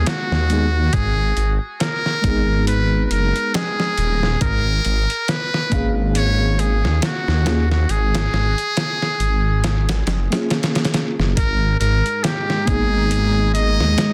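A muted trumpet with a buzzy, breathy tone and scooped notes carries a jazz-style melody over tremolo-laced reedy electric piano, a deep rumbling detuned saw bass and gritty, pitched-down sampler drums in this brooding, hypnotic trip hop excerpt at 69 BPM in G# minor, with a moody analog pad joining at 12.0 seconds and a faint reversed, dreamy texture following at 12.1 seconds.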